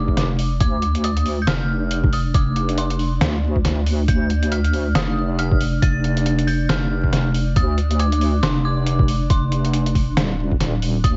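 Deep dubstep at 138 BPM in a half-time, swung feel, this heavy, cavernous passage in D phrygian is cut from a longer piece and runs about 11 seconds. A deep, mellow wobble bass built from square and sine tones sits up front with a fast attack, sustained body and chorus, spanning Eb1 to D2. Alongside it, a muffled, thumpy, pitched-down kick and a compressed sampler-style trip hop kit with hi-hat and a medium-tuned snare give the groove a dusty, low-slung punch. Up high, a dark, detuned FM bell plays an eerie, inharmonic melody between C6 and A6, its decaying notes smeared by chorus and dub echo. A cloudy granular pad holds blurred, evolving chords around D4 in the background, bathed in its own reverb. The sound is dry overall, with vinyl crackle and a rolled-off top end lending it a murky, worn character.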